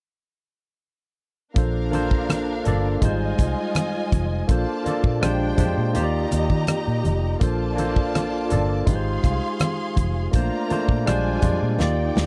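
A barky tine electric piano opens alone at 1.5 seconds, bright and clean through a combo amp and up front, before the rest of the band joins a moment later in this lush, romantic 1970s-style soul excerpt. A modern studio drum kit brings hi-hat, tight kick, rim click and a medium-tuned snare with an airy, polished small-room sound, while a vintage muted fingered electric bass adds a dark, round, punchy foam-muted tone underneath. A string section sits at a distance as the second line, bowed and expressive with vibrato and portamento, and low-tuned congas played with soft hands sit in the background. The smooth harmony moves through Bbmaj7, Fm7/Ab, Bb13 and Ebmaj7, and the passage closes with a drum fill from 11.8 seconds. The recording is dry and close, with little reverb, in the manner of a 1970s studio.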